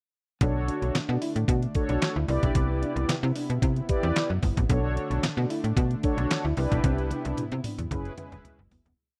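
A snappy, metallic slap-like FM bass anchors this slick, danceable early-eighties boogie funk piece at 112 BPM in B phrygian, playing a fat syncopated line with muted ghost notes over a thumpy, detuned 8-bit drum machine whose snare is layered with handclaps alongside hi-hat, kick and toms. Up front, mellow synth brass with chorus pushes rootless chords with a sawtooth, ring-modulated edge, while a bold, full-bodied analog pad and a clean, fingered electric guitar playing a muted single-note line sit in the background, each treated with chorus. The chords move between Bm9 and Cmaj7 before landing on F#9sus4, and a drum fill arrives with the fade-out at 6.8 seconds, set in a dry, close studio sound with digital ambience.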